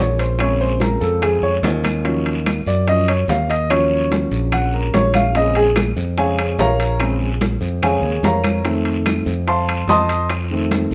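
Sultry and fiery, this short Afro-Cuban jazz excerpt moves at 145 BPM in a straight 4/4 in Bb minor, cycling through Bbm7, Ebm7 and F7. An upright piano sits up front with a woody, naturally sustained tone, taking the solo from the very start to the end at 10.9 seconds over a Db3 to Eb6 range. Beneath it, a growly, direct fingered electric bass holds the low end between Bb1 and Gb2, also placed up front. The percussion enters almost immediately, with ringing metal-shell timbales, raspy guiro and very quiet, round low-tuned bongos heard close and dry, while bright, damped congas and woody claves sit further back in the background. A drum fill lands at 1.8 seconds, and a moderate large-studio reverb gives the ensemble a sense of space.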